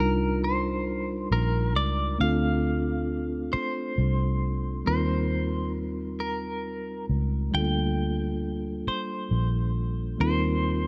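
A twangy, clean, picked electric guitar carries the melody with tremolo and slapback echo from the first moment, over a mellow tine electric piano and a round, punchy, foam-muted fingered electric bass sitting up front, in a slow, late-night, yearning six-eight R&B fragment at 45 BPM whose dark production and light reverb frame chords moving from Cm11 and Dm7 to Eb69 and Gm9/D.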